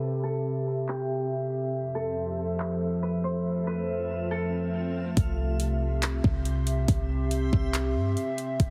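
Heavily compressed and low-pass filtered like a radio in a digital ambience, this blissful, dreamy cloud-rap hip hop excerpt in half-time opens with a mellow, fingerpicked Celtic harp ringing through digital delay over a warbling, nostalgic lo-fi pad with chorus and sidechain pumping and a reversed, detuned granular texture, as a trap kit of knocking kick, metallic hats and handclaps enters at 0.9 s, drops out under a background electronic swell, and returns at 5.2 s alongside a deep, boomy 808-style sine bass.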